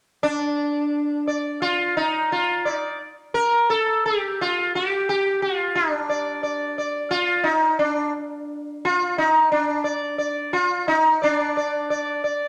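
A solo sitar, plucked with a plectrum and placed up front, carries this introspective, solemn Indian classical excerpt in raga Bhairavi, its buzzing tone and shimmering sympathetic strings ringing through a large studio reverb from 0.2 to 12.5 seconds, with a brief new section arriving at 11.2 seconds.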